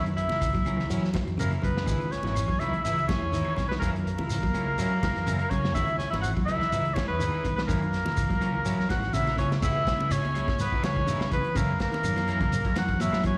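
A clear, up-front oboe carries the melody over a raspy, gritty tenor saxophone second line, a clean picked electric guitar playing arpeggios in the background and a twangy, slightly broken-up guitar adding chorused stabs, with the two reeds and both guitars touched by slapback echo, while a round fingered bass, a crunchy breakbeat kit with a punchy kick and dark cymbals, a grainy shekere, very quiet bright congas and distant woody claves drive this defiant 124 BPM afrobeat fragment in C# dorian that alternates F#7 and C#m9, heard as a live gig through the venue's PA with recital hall reverb and a drum fill at 9.3 seconds leading into a new section at 9.6 seconds.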